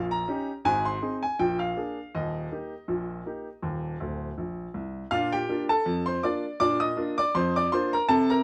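Ragtime piano excerpt in Eb major at 81 BPM in 2/4 with a light swing on the sixteenths, where a lively, cheerful solo upright piano, clear, woody and vintage in tone and placed up front in light reverb, moves through Eb7, Ab, Bb7 and Eb, plays a fill from 4.0 to 5.1 seconds, then turns to F7 as a new section begins at 5.1 seconds.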